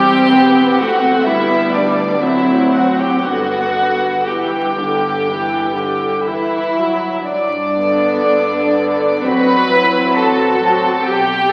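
A classical excerpt for string orchestra, a slow romantic movement with a lyrical, serene mood and a freely breathing rubato pulse. Violins carry a pure, floating melody above a second violin line and intimate, dark violas up front, while cellos and double basses supply the bass further back, all bowed sul tasto; the violas fall silent at 11.0 seconds. The sound sits in a lush scoring-stage reverb and carries the crackle of a very old 78 rpm record.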